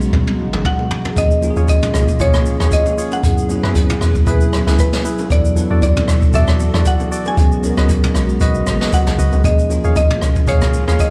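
This late-night amapiano excerpt opens with a drum fill on a jazz brush kit, heard up front with a boomy kick and medium-tuned snare amid hi-hat, rim click, shaker and toms, while a deep, round log drum bass, a bell-like tine electric piano and a soft pad all sound from the start. The groove sits at 116 BPM in 4/4 with a lightly swung sixteenth feel, in Eb phrygian, and very quiet, band-limited congas and bongos add vintage acoustic colour beneath the kit. The log drum bass is the loudest part, dark and percussive with a fast attack and a noise layer. The clean, bright electric piano plays accompaniment over a hollow, flute-like pad that warbles with ensemble chorus and pumps in the background. A woody, mallet-like synth pluck enters at 0.7 seconds with the melody, dressed in chorus and digital delay, and a mellow, organ-like stab joins at 1.6 seconds with the same effects. Suspended ninth chords drift over a light small-room ambience, giving the fragment a deep, late-night mood.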